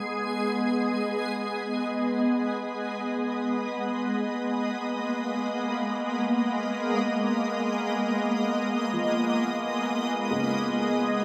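Reflective and melancholic, this free-time ambient excerpt in G# dorian rests on a G# minor chord, where a bright, shimmering pad with octave-up shimmer and chorus sustains chords up front through all 11.2 seconds, a soft, felt-muted upright piano with audible action noise fades in with delayed arpeggios in the background from 0.0 to 3.5 seconds and again from 8.9, and a reedy, nasal hand-pumped harmonium drone arrives at 10.8 seconds, all bathed in a huge, wet reverb.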